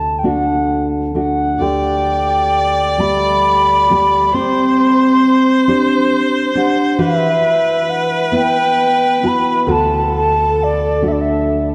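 Set in a rubato 6/8 at about 44 dotted-quarter beats per minute, this Celtic slow air unfolds with a tender, pastoral mood in a brief cut from a longer piece, tuned to A4 = 438 Hz. A baroque flute carries the melody between D5 and C6 with a pure, woody tone, crisp attack, rolled-off highs and expressive vibrato. Underneath, an up-front nylon-string guitar supplies thumb-plucked accompaniment with a full-bodied, deep classical sound spanning D2 to C5. At 1.6 seconds a single bowed viola enters on a focused, distant second line between A4 and D5, sitting lower in the mix. The harmony moves from D through Dsus4, Csus2 and Emadd9 before settling back on D, all bathed in a wet cathedral reverb within a dark, warm production.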